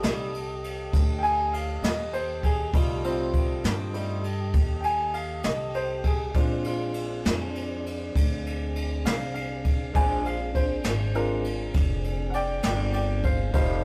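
A slow 12/8 blues at 67 BPM with a straight feel, this gritty, soulful excerpt from a longer piece rests on an up-front brush kit with a boomy kick, dark cymbals and medium-tuned snare, plus pizzicato upright bass on steel strings. A clear, present upright piano with long sustain carries a solo throughout, while the harmony moves from F9 to Bb9 at 6.3 seconds. Under it, a lightly overdriven tonewheel organ holds sustained chords through a slow rotary speaker, with vibrato and key click, in a rough rehearsal-room sound with light reverb.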